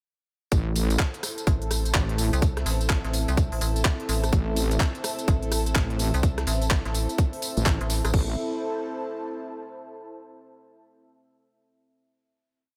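A swung four-on-the-floor kick at 126 BPM drives this swaggering, bouncy bass house piece in A minor, with a tight, tape-warm garage kit adding crash cymbal from 0.5 seconds, when the drop begins. A second garage kit layers crisp hats, handclaps, rim clicks and tambourine into a programmed backbeat, while a very quiet, gritty looped breakbeat of hi-hat and snare sits underneath. The heavy, saturated wobble bass carries modulated phrases with changing wobble speed, and a metallic FM bass answers it with chopped, decaying lines. Above them a deep, moody pad warbles on sustained chords, and a breathy pad with a noise layer drifts through slowly shifting chords, both pumping to the sidechain. The room is dry, and at 8.1 seconds the drop gives way to a final chord that the airy pad holds until 10.0 seconds.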